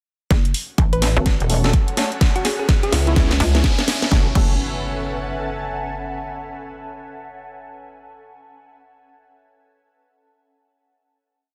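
A saturated, pulsing wobble bass and a hollow, knocking FM bass drive this gritty, swaggering bass house piece, pumping against a punchy four-on-the-floor kick and a garage kit's cracking snare and programmed hats through a build with a drum fill, a filter-swept percussive organ stab, a tine-like thumb-piano pluck with delay, a deep, very quiet analog pad, a bright, ethereal airy pad with phaser, and a riser and impact from 1.9 s that lead into a final chord at 4.1 s.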